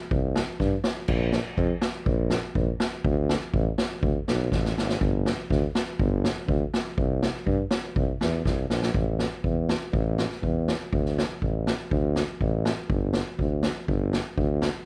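Festive yet bittersweet, this short klezmer excerpt moves at 122 BPM in a straight 2/4, cut from a longer piece. A clear tuba carries the bass line up front, its close-miked, pop-style tone ranging from G1 to G2 with a light vibrato. Beside it, an acoustic street-band drum kit sits in a small room, with a boomy kick, a medium-tuned snare, dark cymbals and a rolled-off top, its crash, kick and snare sitting mid-forward. Drum fills arrive at 4.5 and 8.5 seconds, the second leading into a new section at 9.0 seconds. The production is dark and warm with a light reverb.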